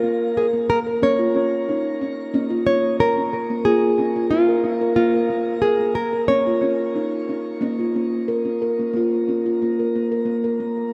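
A straight 4/4 pulse at 91 BPM carries this meditative, hypnotic world piece in tuned percussion, set in Bb minor pentatonic with tuning at A4 = 439 Hz. A steel tongue drum, struck with rubber mallets, plays arpeggios between Bb3 and Bb4 with a round, pure, ringing and airy tone. Up front beside it, a fingerpicked nylon-string guitar carries the melody between F4 and Db5, dark and full-bodied in a deep classical manner, with audible finger squeak. Both parts pass through shimmer reverb and analog delay, and the whole is set in a wet echo chamber with small room ambience, giving an echo-heavy mix. The harmony circles through Bb5, Db/Bb and Bbm twice. The guitar drops out at 7.2 seconds, leaving the tongue drum alone until this fragment of a longer piece ends at 10.9 seconds.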